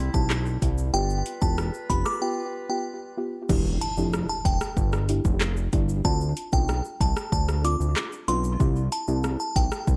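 A clear woodwind section holds pumping chords over a fat analog bass until 3.5 s, opening this sultry, tough dancehall excerpt at 94 BPM, where a glassy synth bell carries the tape-echoed, tremolo-laced melody above a soft, round pluck accompaniment, an overdriven deep house kit with a deep kick and metallic hats drives up front, and a background electronic impact arrives at 3.5 s in a dry, echo-heavy mix.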